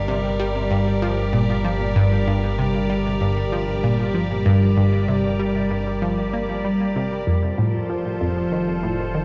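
An evolving, detuned wavetable pad opens up front at 0.0 seconds, holding bright, morphing chords in G minor over a fat, thick analog bass, setting a mysterious, cosmic mood in this sequencer-driven ambient space music at 96 BPM. From 0.1 seconds a nasal, sawtooth analog pluck riff with a noise layer, a fast attack and a decaying tail plays through chorus, phaser and analog delay, while the harmony moves from Gm to F at 7.3 seconds. A cathedral reverb and cassette tape character give the brief cut from a longer piece a dreamy, reverb-soaked sound.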